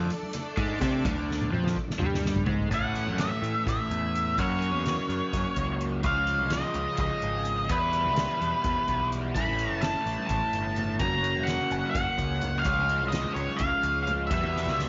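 Psychedelic rock in a trippy, hazy 7/8, this excerpt opens on shimmering string-machine violin chords that stop at 2.7 s, where an up-front octave-fuzz lead guitar with slapback echo takes the melody over a dark, double-tracked overdriven guitar riff run through a rotary speaker, a growling overdriven bass, a soft-mallet drum kit with a fat snare and boomy kick, and very quiet ringing congas that return at 9.4 s, the whole mix set in light small-room reverb.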